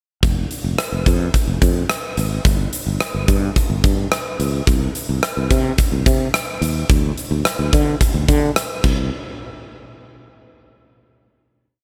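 Nostalgic and moody, this short 1980s-style pop piece in C minor moves at 108 BPM in a straight 4/4. A growly fretless electric bass plays a syncopated pop-funk line with chromatic approach notes. Above it, a huge arena drum kit with a punchy kick, bright cymbals and a big backbeat sits up front in a pumping hall. Both parts run through the verse from 0.2 seconds until about 9 seconds, and the piece then closes on a final hit that rings to 11.3 seconds.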